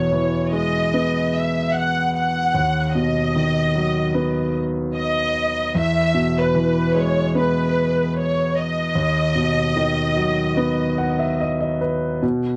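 Tender and emotional, this short pop fragment pairs a lush, bowed violin section carrying the melody with vibrato and portamento against an intimate concert grand piano whose deep bass, long sustain and audible action noise fill out the accompaniment, all captured in a dry, close 1970s-style studio sound with light reverb, as the strings stop at 11.4 seconds and a piano fill closes out to 12.2 seconds.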